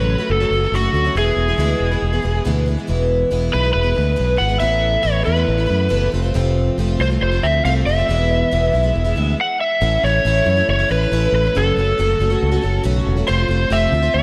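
A straight 4/4 pulse at 138 BPM drives this short cut from a longer folk rock and heartland rock piece in A major, its mood jangly and nostalgic. A picked, plugged-in twelve-string acoustic guitar carries the accompaniment with a shimmering, octave-doubled ring, a touch of chorus and audible finger squeak. Up front, a warm, overdriven slide guitar played with fingerpicks sings the melody, coloured by subtle chorus and tape echo. Beneath them, a bright, direct fingered electric bass holds the low end. The harmony moves from F#m and E through Asus2 and F, with fresh passages arriving at 2.9 and 9.8 seconds, where the chords turn toward A, F#m and F. A lush hall reverb and small-room ambience soak the mix in a dreamy haze.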